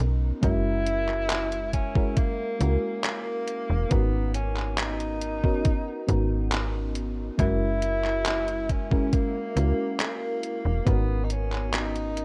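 Nostalgic and hazy, this vaporwave fragment, cut from a longer piece, drifts at an unhurried pace in straight 4/4. A soft, round FM electric piano carries the accompaniment throughout, its dark tone thickened by a phaser, subtle chorus and a cassette-tape haze, while a snappy, metallic FM bass sits up front beneath it. A detuned 8-bit drum machine supplies overdriven handclaps and hi-hat through gated reverb, joined at 0.4 seconds by a thumpy, overdriven electronic kick that stays prominent until 11.0 seconds. Also entering at 0.4 seconds, a mellow tenor saxophone takes the jazz-style solo melody with vibrato, sounding distant and roomy despite its forward placement, and trailed by tape echo. The harmony sways between F#7 and G#m11, and the drums carry a small-room character beneath a digital cassette ambience.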